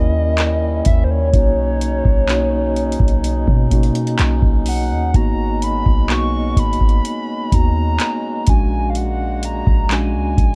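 Dark, dry production frames this tender, dreamy contemporary R&B excerpt, where a hollow, woody clarinet-like synth lead with chorus and phaser carries the melody over mellow tine electric piano, a reedy, breathing pedal harmonium holding sustained chords, a clean, boomy 808-style bass, and an up-front analog drum machine of deep kick, metallic hats and handclaps that enters at 0.4 s, as the harmony moves from D#7b9 through Bmaj9 and G#m9 to A#7alt.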